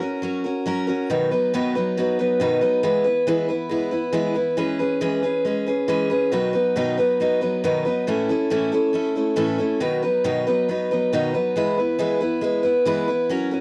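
A homespun cassette recording in a small room with moderate reverb carries this short country fragment, cut from a longer piece, at 138 BPM in E major with a straight 4/4 feel. A lone picked steel-string dreadnought acoustic guitar sits up front for the full 13.6 seconds, its bright, full-bodied tone colored by tape and marked by audible finger squeak as it ranges from A2 to B4. The heartfelt, nostalgic mood comes through a simple progression that opens on F# and moves through B, E, E6 and A before settling on E at 11.6 seconds.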